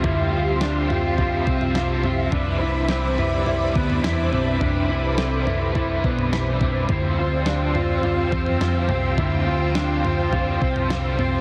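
A straight 4/4 pulse at 105 BPM comes from a clean 12-bit drum machine with a thumpy kick, fat snare and toms, anchored by a round, hollow-body fingered bass in this ethereal, melancholic dream pop fragment in D dorian, moving from Dm11 to Cmaj9 and back at 6.9 seconds. A bright, overdriven, double-tracked garage guitar with tremolo and chorus picks out accompaniment beside a dark, mellow electric guitar playing arpeggios through lush chorus and delay, while a vintage sawtooth string machine with cellos holds slow-attack chords coloured by phaser. A very quiet, metallic vibraphone with fast motor vibrato rings from 0.8 to 10.5 seconds, and the whole mix sits in a moderate plate reverb with a heavily compressed, radio-like sound.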